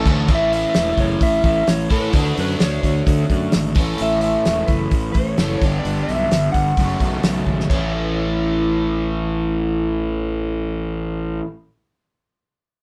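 A confident, driving classic rock excerpt in A major at 130 BPM opens with a warm, slightly broken-up electric slide guitar singing the melody over a crunchy, double-tracked overdriven guitar riff with phaser, a growly, punchy fuzz bass, and a damped 70s drum kit with a fat snare and dark cymbals, moving through A, D, A, G and F#m before a drum fill at 7.5 seconds, after which the drums stop at 7.8 seconds and the guitars and bass carry on into a new section back on A, all in a moderate live-room reverb.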